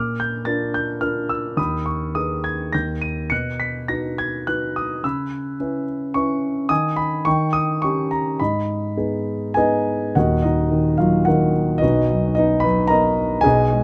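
Classical solo piano in a moody, bittersweet vein, this short cut from a longer piece moves in a rubato 3/4 at around 97-114 BPM, its dark, mellow grand piano sitting intimately up front with audible action noise in a close, dry recording, spanning the keyboard from deep bass to high treble as it turns from G# minor through chords like C#m7 and D#7 to a brief fill at 9.3 seconds before shifting into Eb minor at 10.2 seconds.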